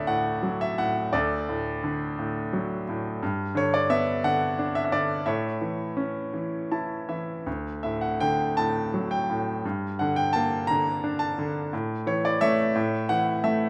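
A bright concert grand piano, brilliant and up front with deep bass, plays a tender, calm classical solo in D major and 6/8 at a rubato 53-60 BPM, moving from D through G and A to a shadowed G minor, with a fill at 6.3 s and a moderate recital hall reverb around it in this brief cut from a longer piece.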